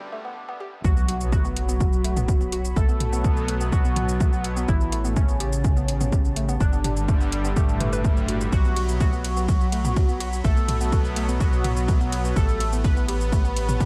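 Driving and dramatic, this melodic techno excerpt moves at 125 BPM in B minor, opening on a brief break where a woody, wave-folded pluck plays arpeggios in the background, soaked in chorus, dub echo and sidechain pumping. At 0.8 seconds the drop arrives with a sub drop impact, as a punchy, tape-warm electronic kick sits up front over a deep house kit of metallic, overdriven hi-hats, ride cymbal, shaker and toms. A tight, nasal sequencer bass with tube saturation pumps beneath, while a juicy, resonant sweep polysynth carries the melody through chorus and delay. An airy, dreamy lead with vibrato and portamento traces a lower second line, and a morphing wavetable pad holds sustained chords high in the background with its own reverb. From 1.2 seconds a bold, brassy analog pad adds bright stabs over a progression moving through Bsus2, A7 and G6, all within a dark, high-passed digital ambience.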